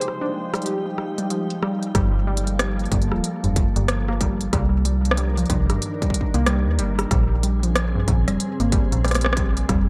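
An up-front metallic FM bass with a mellow, fast-decaying tone arrives at 1.9 seconds alongside a distorted electronic kick, anchoring this eerie, cerebral IDM excerpt in a swung 4/4 over shifting minor ninth chords. Beneath them, a glassy FM pad holds ethereal sustained chords with ensemble chorus and built-in reverb, a nasal, warbling dusty pluck spins arpeggios through chorus and tape echo, and an industrial kit of crisp hi-hats and rim clicks carries a filter sweep until the kick and bass enter. Warbly lo-fi synth keys open with a brief nostalgic melody, their detuned tone roughened by vintage 12-bit sampler grit and dub echo, before dropping out at 1.6 seconds in an echo-heavy, lightly reverberant mix.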